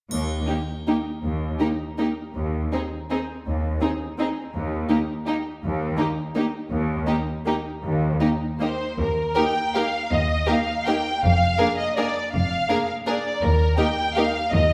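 A classical orchestral ballroom waltz in Eb major, festive and sweeping, moving in a rubato 3/4 at roughly 149-181 BPM in a fragment cut from a longer piece. A brief triangle tap opens alongside the cellos' lush, up-front bass, and from 0.5 s the violins carry an expressive vibrato melody over a focused second violin line and smooth, even violas. The double basses join at 9.0 s for the second section with soft-attack, portamento bowing, all set in the wet reverb of a recital hall.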